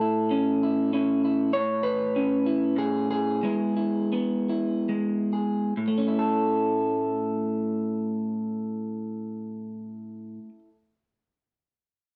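A slightly broken-up, compressed electric guitar played through a small old amp sits up front and plays alone in this gentle, peaceful folk passage in 3/4 and A major, moving from A to E/G# at 3.4 seconds and back to A at 5.8 seconds, with a tempo of 63-100 BPM that slows between 1.5 and 5.8 seconds, all cut from a longer piece and bathed in moderate spring reverb.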